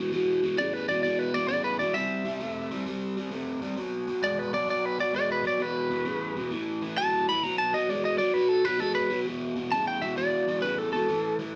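Blues in E minor at 131 BPM with a swung 4/4 feel, smoky and brooding. An overdriven electric guitar, up front and tinted with phaser, picks a low riff from the start over a progression built on E5, C, B5 and A5. From 0.6 seconds a compressed, twangy lead guitar with a slightly broken-up edge carries the melody in the upper register, and both sound like a band playing live in one large studio room with moderate reverb and a softened top end.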